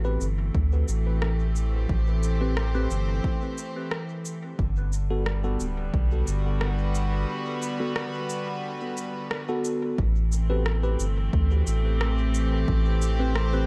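Opening together, a rich, reedy chamber string section holding sustained chords, a clean tine electric piano stabbing through phaser and dub echo, and a round, soft sub bass with tube saturation set up front lay down a deep, spacious ambient dub groove at 89 BPM in A dorian, shifting from Am7 to Gmaj7 and back. Tape-warm electronic cabasa and rim click with dub echo enter at 0.2 seconds and a punchy, layered electronic kick at 0.5 seconds, while a break begins at 7.3 seconds with a band accent inside it, all set in a digital ambience in this section cut from a longer piece.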